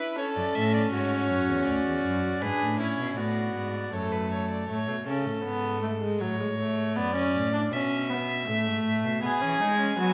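A baroque-style fugue for string quartet, elegant and lively, moving at 80 BPM in 3/4 with a straight feel, cut from a longer piece. Period-style players on gut strings give the ensemble a reedy edge, with the first violin carrying the melody between A4 and G#5 in a rich voice touched by light vibrato, placed up front. The second violin adds a warm second line with an airy bow, dropping out at 4.7 s and returning at 9.2 s, while the viola fills in a warm accompaniment from F#3 to E4. The cello enters at 0.4 s with a rich, close bass line reaching down to D2. The harmony moves from F# minor through D and a half-diminished G# chord before settling into A major at 4.7 s, passing through B minor and ending on E. A moderate scoring-stage reverb with a 2.0 s decay gives the quartet a sense of space.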